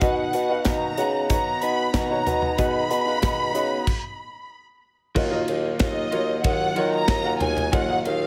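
Light reverb and a small-room ambience frame this short, bittersweet and earnest piece of piano-driven pop in a straight four, with a lush, bowed violin section carrying the melody up front over a punchy, polished drum kit. A clear concert grand with deep bass and a compressed, direct-recorded clean electric guitar riff sit in the background, while a mellow bassoon with light vibrato takes the bass line and a very quiet, flute-like tonewheel organ with key click and rotary speaker holds sustained chords. A stop arrives at 3.9 seconds, and at 5.2 seconds a new section begins as the harmony moves from a B chord to Ebmadd9.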